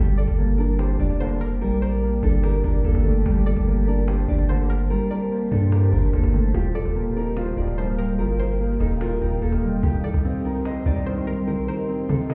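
A deep, sine-toned 808-style bass sits up front with a fast attack and long decay, anchoring this menacing, hard-hitting trap excerpt in G minor at 146 BPM with a half-time 4/4 feel. Beside it, a soft, felt-muted upright piano plays intimate, mellow accompaniment, while a small fingerpicked nylon-string guitar carries the melody through a delay. In the background, a cloudy, evolving granular pad holds blurred, detuned chords with its own reverb. A twangy, string-like resonator pluck with chorus and delay adds a faint second line, and a woody cajon with faint snares and a gritty 12-bit sampler edge keeps time. A clear brass ensemble with light vibrato drops in for brief stabs starting at 1.2 s, over a progression that moves from Gmadd9 to Ebadd9 at 6.5 s and to Cm at 9.8 s. Everything is set in a small room reverb with added club reverb, and it sounds muffled, as if heard through a wall.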